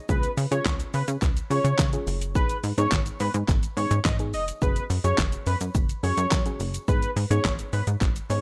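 A bittersweet, driving dance-pop passage opens at 0.1 s with all four parts together, the electronic, layered pop drum kit sitting up front with a punchy kick, a fat snare, metallic hi-hats, handclaps and shaker in a straight 4/4. Beneath it, a funky analog bass mixes sawtooth and square waves into a fast-attack filter pluck that decays, and it pumps with sidechain compression. A soft, gentle pluck carries the accompaniment, its dark, rounded tone blending triangle, sine and saw with a noise layer and sub octave, short decays, chorus and the same pumping motion. On top, a bold, retro octave-doubled lead sings a sustained, mellow melody built from sawtooth and triangle with ring modulation, vibrato, chorus and sidechain pumping. The harmony moves through C#, G#m, F#sus2 and back to G#m, framed by a bright 1980s-style digital production with little reverb.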